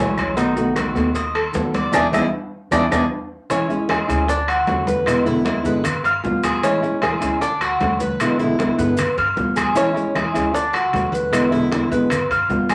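This sunny, danceable excerpt of Cuban son and guajira opens with a full-bodied, fingerpicked nylon-string guitar and a metallic, picked Cuban tres with double strings playing arpeggios, both up front, over a woody pizzicato upright bass. At 0.2 seconds the percussion joins: thick-skinned congas played with hard hands, tight high-tuned bongos kept very quiet, band-limited vintage claves, grainy maracas in the background and ringing metal-shell timbales that sound distant in a large room. A band accent from 1.9 seconds and a drum fill from 2.5 seconds lead into a new section cycling through seventh and major-seventh chords, heard in a wet club reverb.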